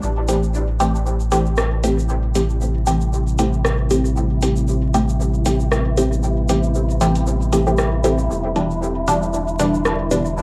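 Cavernous and nocturnal, this dub techno excerpt moves at 116 BPM in A minor with a light 16th-note swing, shifting from Am7 to Em7 at 8.3 seconds. A round, mellow sine sub bass and a grainy, close egg shaker start at once, joined at 0.3 seconds by muted, detuned chord stabs carrying chorus, phaser and dub echo, plus a soft analog rhythm box of metallic hats and rim clicks re-recorded in a large room. Behind them, an airy, breathy wind-like noise texture and a moody detuned sawtooth pad under a filter sweep rise into the background, the whole piece sitting in a lightly reverberant home cassette sound with vinyl crackle.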